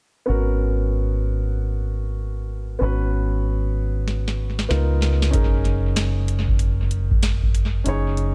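A loping, swung 4/4 groove in nocturnal, smoky jazz-hop, cut from a longer piece, where a mellow, vintage-toned grand piano voices dark extended chords over a round, punchy fingered electric bass from 0.3 seconds, before a booming analog drum machine with a deep kick, crisp snare and metallic hats enters at 4.1 seconds with a fill trailed by analog delay, all set in a dry, echo-heavy mix.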